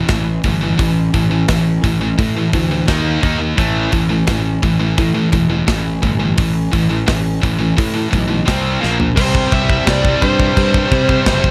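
A straight, steady 4/4 pulse drives this aggressive, heavy metal clip, cut from a longer piece. Two riffing guitars share the opening: a bright, scooped high-gain guitar sits up front while a second distorted electric guitar stays in the background, both grinding through a progression that moves from A5 to D#5 and back, then on to C5 and Bb5. Beneath them, a fuzz-laden picked bass growls with punchy, overdriven grit, and a tight acoustic drum kit with a medium-tuned snare and firm kick works through crash, hi-hat and toms, closing the first section with a fill just before the change. At 9.2 seconds the music returns to C5 and a dark, high-gain lead guitar enters with a short distorted melody trailed by delay. The studio reverb and dusky, rounded production give the whole passage a dense, weighty sound.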